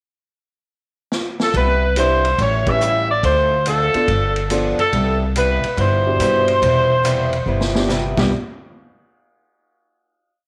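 An energetic, joyful big band swing piece opens with a drum fill from a vintage kit at 1.1 seconds, its sticks working a ride cymbal pattern with dark cymbals, a tight kick and a gritty, saturated tone. At 1.5 seconds the upright bass, archtop guitar and band settle in, the woody, pizzicato bass playing a two-feel line up front while the boxy, picked archtop strums jazz chord shapes in four, a finger squeak audible along the way. The bright saxophone section carries a motif-based melody in period phrases, harmonised in tight four-part block voicing with light vibrato and a slapback echo, sitting prominently over the band. A warm grand piano joins at 2.0 seconds with syncopated comping in rootless voicings, a band accent lands at 2.6 seconds, and the harmony moves through a classic Cmaj7, A7, Dm7, G7 turnaround. The whole thing sits in a small room with light reverb, another drum fill near the end ushering in a final hit at 8.3 seconds.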